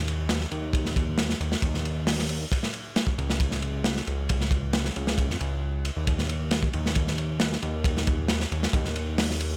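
A fat, thick analog bass opens this gritty, energetic breakbeat excerpt, its detuned sawtooth tone shaped by a filter pluck with a fast attack and sustained body, warmed further by tube saturation. Moving between C#2 and F#2, it sits up front in the mix. At 0.1 s a crunchy acoustic breakbeat kit joins at 135 BPM in a straight 4/4, built from kick drum, snare, hi-hat and ride cymbal. The kit sounds saturated and mid-forward, with a tight kick, a medium-tuned snare, dark cymbals and a rolled-off top that keep it gritty and close, as if captured in a studio room. The drums sit slightly louder than the bass, and the dry overall sound, with little reverb, keeps both parts immediate through this single section, which runs to 9.6 s.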